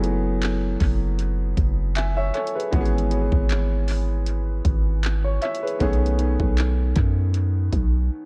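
A lightly swung groove from a smooth, sampler-gritty R&B drum kit of knocking kick, hi-hat and handclaps drives this dreamy, romantic contemporary R&B fragment, where the kit and a clear, slightly boxy baby grand piano each carry analog delay over a deep, boomy 808-style bass, all up front in a dry but echo-heavy mix that moves through F#m11, E6/G# and B13 before cutting off at 8.3 seconds.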